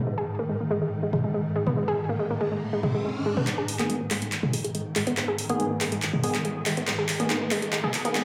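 An up-front, round analog pluck riff with tape echo and a cassette-worn, tube-saturated edge drives this intense, hypnotic peak-time techno cut, over a swarming, detuned drone, with an overdriven analog drum machine of handclaps, hi-hat and toms entering at 1.1 seconds, very quiet risers and downlifters, and an edgy sync-sweep polysynth joining with stabs at 3.8 seconds as filter sweeps and a drum fill build through a dreamy, plate-soaked mix.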